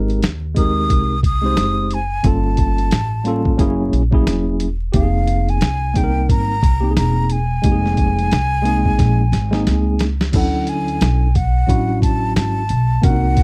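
Swung sixteenths in four drive this nocturnal, cool jazz-hop excerpt, where a gritty, compressed, tape-warm, pitched-down boom bap kit with a thumpy kick and medium-tuned snare sits up front beside a woody, dark pizzicato upright bass on gut strings. A worn, slightly out-of-tune tine electric piano, lightly overdriven through its built-in speakers, lays down lush extended chords from the start, while a breathy, mellow concert flute enters at 0.6 seconds with an unsteady, tongued melody and vibrato. A drum fill from 9.0 seconds leads into a new section at 10.3 seconds, all within a dry, close 1970s-style studio sound dusted with vinyl crackle.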